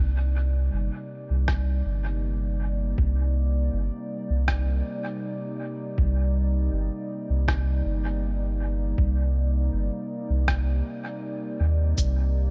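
Deep and spacious, this ambient dub fragment moves at 80 BPM in C minor, resting on a single Cm7 chord as a warbling, nostalgic pad of detuned sustained chords with chorus and built-in reverb glows beneath a round, up-front sub bass, while a muffled, thumpy kick and a pitched-down rim click and shaker carrying dub echo enter at 1.5 seconds.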